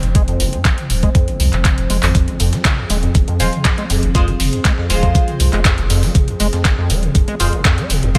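An acid house excerpt in F minor opens at 120 BPM in straight 4/4, with a squelchy, resonant square-wave acid bass riff, a thick triangle sub bass with sidechain pumping, and a warbling, detuned tape-like pad holding sustained chords over an Fm chord. An analog drum machine supplies handclaps and metallic hi-hats from the start, and a thumpy electronic kick, re-recorded in a small room and sitting up front, joins at 0.1 seconds as the loudest element. After a drum fill between 1.6 and 2.1 seconds, a very quiet, gritty sampler-style kit adds a fat snare, hi-hat and shaker. At 3.4 seconds a nasal, band-passed sawtooth chord stab enters with a filter pluck, phaser and delay. The mood is driving and hypnotic, set in a light digital ambience with the pad's nostalgic lo-fi haze floating behind the bass squelch.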